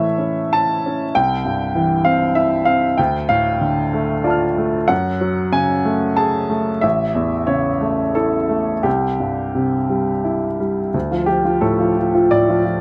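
A rubato pulse in 3/4 drifts between 84 and 99 BPM, giving this short neoclassical minimalist piano piece in D minor a freely breathing feel. It is cut from a longer piece, and its mood is melancholic and wistful. A solo upright piano carries everything, ranging from A1 up to F6 with a clear, woody, natural tone and long sustain, placed up front in the sound. The harmony moves through A, C and Dm, passes through an F#madd9 at 4.9 seconds, then returns to A and C before settling on Dm again at 10.9 seconds, where the opening section begins to repeat. Close, detailed microphones and light reverb keep the instrument intimate and present.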